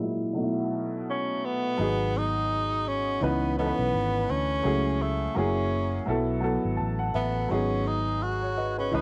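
Swung sixteenths in 4/4 give this reflective, melancholic lo-fi hip hop fragment its loping feel, with a filter sweep over the opening 1.8 seconds before a dark, round, foam-muted electric bass enters with a punchy, amped tone. A clear tenor saxophone carries the solo melody in a jazz style, with soft attacks, vibrato and scooped notes, over a woody, worn, slightly detuned upright piano whose long-sustaining chords move through shades like B7sus4, G#m7 and C#m9. Vinyl crackle, a low-pass filter and moderate studio reverb lend the up-front trio a dusty, intimate haze.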